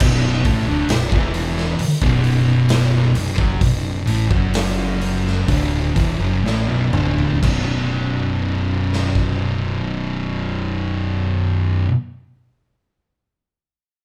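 Hypnotic, sludgy stoner and doom metal in B minor, crawling at 61-68 BPM as it slows over the opening 7.4 seconds, with two dark, picked fuzz guitars (one tucked in the background) grinding out a riff over an overdriven, tube-saturated fingered bass, while a raw, punchy garage kit with a gritty, rolled-off top sits up front in a bright stone room, drives a fill into the shift from Bm to B5, and drops out at 9.4 seconds, all in a light-reverb live-room sound cut from a longer piece.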